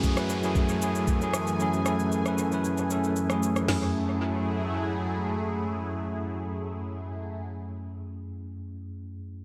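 Awash in echo under a light reverb, this hypnotic, deep amapiano fragment sets a bright, bell-like tine electric piano with dub echo over a thick, detuned unison pad that pumps through chorus and phaser, while an up-front, tape-warm R&B kit with a knocking kick, woody snare, rim click, shaker, toms and crash, also soaked in dub echo, briefly drops its kick before stopping at 3.8 seconds alongside an electronic downlifter, leaving the pad to hold until 7.4 seconds and the piano to ring on alone to 9.4 seconds.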